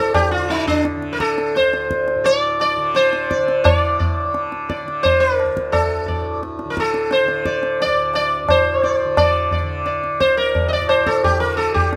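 A steady, straight 4/4 pulse at 87 BPM underpins this meditative, solemn Hindustani classical excerpt, with high-tuned tabla strokes entering at 0.1 s, their short ring sounding close and dry. Up front, a bright, plectrum-plucked sitar carries the melody between D4 and Eb5, its buzzing tone haloed by shimmering sympathetic strings. Beneath it, a softly plucked tanpura holds a warm drone from D2 to D3, and the music moves into a new section at 3.6 s within a moderate studio reverb, tuned to A4 = 439 Hz.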